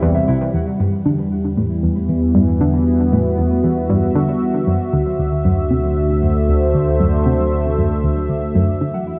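Ambient, sequencer-driven space music in E minor at 116 BPM, expansive and cosmic, where an up-front, detuned sawtooth pad sustains chords over a round, deep analog bass and a chorused, tape-echoed analog pluck riff with a filter sweep, while a pulsing gated texture glints only until 0.5 s and a mellow, clean electric guitar fades in with background arpeggios, all set in a dark plate-reverb space moving from Emadd9 to D7 at 4.7 s.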